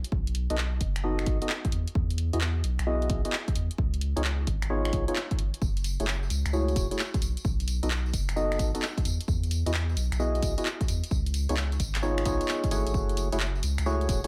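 Soulful and skippy, this two-step UK garage excerpt moves at 131 BPM with a swung 16th-note feel in F# dorian, cycling through B7, Emaj9, C#9 and F#m9. A punchy, tape-tinged electronic kick and a house kit of finger snaps, handclaps, hi-hat and tambourine, re-recorded in a small room, sit under a deep, thick sub bass with tube saturation, held up front. A hollow, mellow organ stab enters at 0.5 seconds, percussive and decaying, coloured by analog chorus, a diffuse ambient delay and a filter sweep, all set in a light digital reverb.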